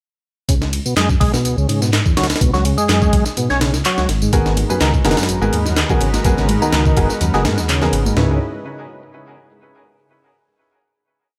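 A gritty, overdriven tonewheel organ sits up front in this short, funky breakbeat piece, repeating a 32-step riff with key click, third-harmonic percussion, chorus vibrato and delay. Beneath it, a dark detuned saw bass rumbles through a syncopated line. A compressed, pitched-up sampler break with a thumpy kick, high-tuned snare, hi-hat and toms drives the groove with looped edits and a light swing on the sixteenths. A quieter house machine layer adds handclaps, ride cymbal and tambourine over the break. From 4.3 seconds a lush, warbling unison pad enters in the background with chorus and sidechain pumping, alongside an intimate baby grand piano playing dotted-rhythm stabs in close voicing through delay, and very quiet ringing congas join at 4.6 seconds. The harmony moves from C#7(no3) to G#m9 and settles on a C#m9 final chord at 8.2 seconds.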